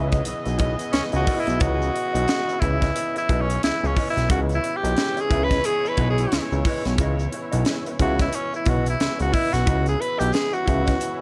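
Swung sixteenths at 89 BPM drive this sly funk excerpt in C# minor, where a crisp fusion drum kit with a high-tuned snare and a fat, detuned analog bass sit up front under a sustained C#m9 chord, a slightly broken-up lo-fi guitar and a smooth horn section hover in the background, a very quiet gritty organ with slow rotary speaker and a faint grainy egg shaker fill out the texture, and a raspy, forceful tenor saxophone takes the lead solo from 0.9 seconds under light reverb.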